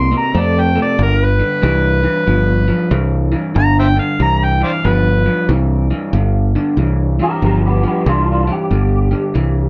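A gritty, overdriven harmonica solos in a jazz style with tongue slaps and scooped notes over a slightly broken-up, picked guitar riff carrying a lush chorus and a growly, punchy fingered bass in this swaggering, laid-back swung blues at 93 BPM in G mixolydian, cut from a longer piece, until the harmonica stops at 5.5 seconds and a dark, twangy, lo-fi second guitar enters at 7.2 seconds with a fingered melody wrapped in ensemble chorus and plate reverb, the whole mix sitting in a light reverb.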